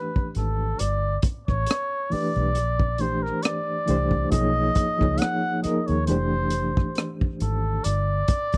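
R&B and neo-soul with a relaxed, smooth mood at 68 BPM and a lightly swung sixteenth feel, this short cut pairs a mellow, breathy cup-muted trumpet melody with a reedy, bright electric piano shimmering in fast tremolo through chords such as Fmaj9, Bbmaj9 and Bmaj9, while a gritty, saturated breakbeat kit with punchy kick, hi-hat and rim click enters at 0.2 seconds and a round, foam-muted fingered electric bass joins at 0.4 seconds, all captured in a dry, close 1970s-style studio sound.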